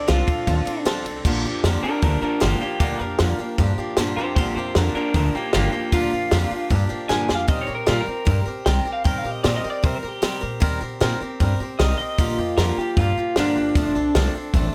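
Rockabilly with a rollicking, retro feel, this excerpt opens on a clean electric guitar solo from a twangy, slightly broken-up guitar through a small old amp, up front with plate reverb and tape echo, over a boxy, picked swing-style acoustic guitar, a woody, thumpy pizzicato upright bass with gut strings, and a dry compact cocktail drum kit with dark cymbals, a high-tuned snare and a tight kick, whose drum fill lands at 7.1 seconds amid sixth chords in a light room.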